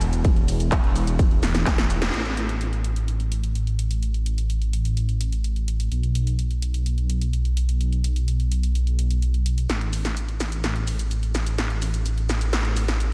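A straight groove drives this triumphant, anthemic slice of festival progressive house, where a punchy, layered electronic kick thumps only from 0.2 to 1.8 seconds beneath a thick, saturated, detuned saw bass with chorus and sidechain pumping sitting up front, while a big-room dance kit of high-passed handclaps, hi-hat, ride cymbal, shaker and punchy snare carries the drop into a band accent at 2.0 seconds and on to a drum-fill build-up from 9.7 seconds, all in a light digital ambience.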